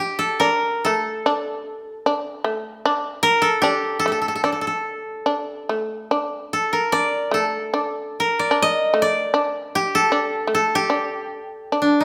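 Japanese traditional chamber music with a meditative, still mood and an uneven rubato feel, where the bright, woody koto, played with fingerpicks, carries the melody up front while the plectrum-plucked, fretless shamisen adds a buzzing, percussive second line beneath it, both sounding together throughout the 12 seconds in a moderate recital-hall reverb.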